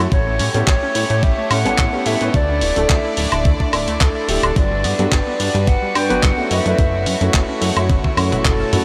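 Soaked in a huge ambient reverb, this dreamy, sunny nu-disco excerpt grooves at 108 BPM in A mixolydian with a light swing, moving through A7, Dsus2, Gmaj7 and F#m7. A mellow, straight-toned silver concert flute carries the melody over an intimate baby grand piano with audible action noise, both touched with delay. Floating sul tasto violin chords pump with sidechain in the background, as does a round, detuned analog pluck playing chorused, delayed arpeggios. A glossy, dark synth bass sits beneath a gritty, compressed soul sampler kit of handclaps, hi-hat, toms and woodblock and a thumpy, tape-warm electronic kick; both drum parts enter at 0.1 s, with a drum fill from 7.9 s.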